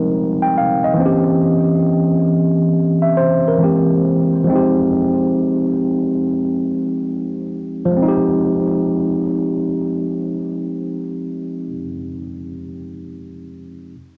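Melancholic and nostalgic, this hip hop fragment, cut from a longer piece, moves at an unhurried 69 BPM in 4/4 with a 64% swing on the sixteenths, set in F minor and tuned to A4 = 442 Hz. A lone tine electric piano carries the whole 14 seconds, ranging from E3 to G5 and sitting up front with a worn, slightly out-of-tune yet clean tone, as if heard through built-in speakers. A low-pass filter, cassette tape coloring and tape echo soften and age its sound. The harmony moves from Fm9 to C7b9 at 1.0 s, shifts to C7b13 at 3.6 s and settles back on Fm9 at 4.5 s, with a new section arriving at 8.0 s. A damp, close booth ambience with a short 0.2 s decay frames the home cassette recording, lending it an intimate, lived-in feel.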